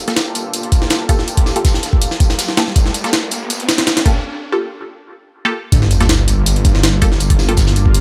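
A straight 4/4 drum and bass groove at 162 BPM drives this atmospheric, frenetic jungle excerpt in G minor, led by an up-front, overdriven sampler-style kit with a thumpy kick and high-tuned snare, backed by a saturated acoustic breakbeat kit with a rolled-off top sitting in the background. A menacing, beating detuned saw bass holds the low end under a lush, airy unison pad with chorus, phaser and 12-bit sampler grit sustaining a Gm9 chord, while muted, deep chord stabs with phaser and dub echo sit alongside it. A background riser enters at 2.3 seconds, giving way to a break at 4.2 seconds before the drop and a sub-drop impact land at 5.7 seconds in a small room ambience.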